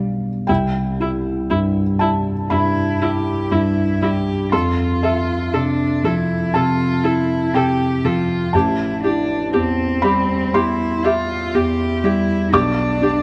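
A felt-muted upright piano opens at 0.0 s, dark and mellow with audible action noise, sitting up close in this intimate, tender neoclassical piece at a rubato 60 BPM in C major. A warm, bowed viola with vibrato, played by a single player, enters at 0.5 s, and a clear, even cello with slapback echo adds a distant second line from 2.5 s. The harmony moves through Cmaj7, Fmaj7 and Am7 to a rootless G/B, all within a moderate plate reverb that places the ensemble further back in the room.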